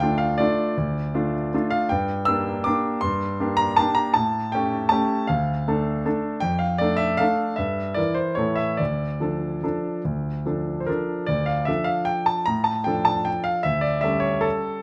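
Close, detailed microphones in a moderate recital hall place a clear, natural grand piano up front for this bittersweet, wistful classical waltz in a rubato 3/4, played solo from D2 up to E6 as a short passage cut from a longer piece, its opening phrase returning at 11.3 s before the recording ends at 14.8 s.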